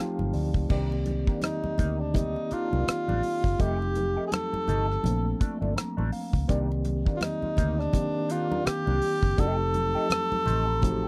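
A breathy, scooped tenor saxophone with tape echo carries an up-front, jazz-style melody over clean tine electric piano, which opens with a fill as foam-muted, punchy fingered bass, bright hard-hand congas in the background and a damped 70s drum kit with dark crash cymbal, hi-hat, tight kick and rim click settle in, before a mellow, clean wah guitar riff joins at 0.7 seconds in this lush 1970s-style soul excerpt at 83 BPM, with a gentle sixteenth-note swing over Cm9, F9 and Bbmaj7 chords in a dry, close studio sound.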